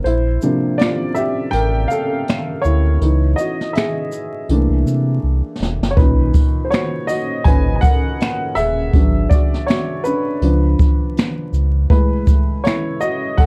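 Melancholic and reflective, this lo-fi hip hop excerpt at 81 BPM moves with a gentle 16th-note swing, its dark, woody upright piano soloing throughout with a worn, slightly detuned cassette-tape character over rich jazz chords. A deep, sine-like sub bass with octave sits up front until 11.9 seconds, while a jazz brush drum kit with a boomy kick, snare, hi-hat, shaker and finger snaps plays a fill at 5.2 seconds, and a jingly tambourine drifts in the background from 6.3 seconds. Light reverb and vinyl crackle give the whole production a dusky, mellow haze.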